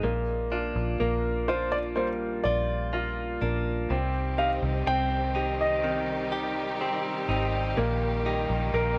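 Pop ballad fragment, tender and emotional, built on a brilliant, woody upright piano, a clean, scooped electric guitar playing arpeggios, and a round, foam-muted electric bass sitting up front. A dark, mellow grand piano carries the melody from 1.5 to 7.3 seconds, and a lush bowed string section with vibrato and portamento adds sustained chords from 3.9 seconds. The harmony moves from Bb6 to Cm and on to Eb/Bb, heard within light reverb and small room ambience.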